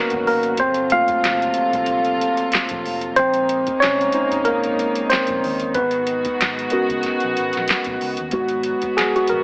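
A soft vintage rhythm box sets a 93 BPM pulse in 4/4 with a 16th-note swing, its deep kick, crisp snare, metallic hats and handclaps overdriven and placed up front, with a short room on the snare, claps and hats. This brief cut from a longer neo-soul and R&B piece feels introspective and late-night. A worn, slightly out-of-tune tine electric piano, clean and warm through a combo amp, carries the lead throughout and sits forward in the mix over moody minor eleventh chords moving from G#m11 through Gm11 and A#m11, returning to G#m11 and landing on G#m9 at 8.3 seconds. Behind it, a distant, reedy studio string section holds sustained chords with light vibrato and a period gut-string tone. Low in the background, a round, punchy, foam-muted fingered electric bass with an amped, dark character enters at 0.1 seconds. A moderate one-second reverb surrounds the mix, and a heavily compressed AM-radio treatment gives the whole recording a lo-fi, broadcast-like character.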